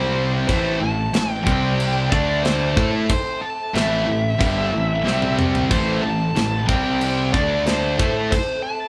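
A searing high-gain lead guitar carries the melody up front from the first moment, over a dark, woody bowed string section held very quiet beneath and a stack of picked riffing guitars: one heavy and high-gain, one tight and distorted, and a double-tracked, compressed fuzz guitar tucked far back. A gritty, overdriven fuzz bass anchors the low end, and a tight acoustic metal kit with bright cymbals and a tight kick enters at 0.5 seconds, hitting a fill at 5.1 seconds. This is a heavy, dark heavy metal excerpt in A minor at a straight 92 BPM, moving through A minor, C5 and D5 chords, with a lightly reverberant sound of a band playing together in one room.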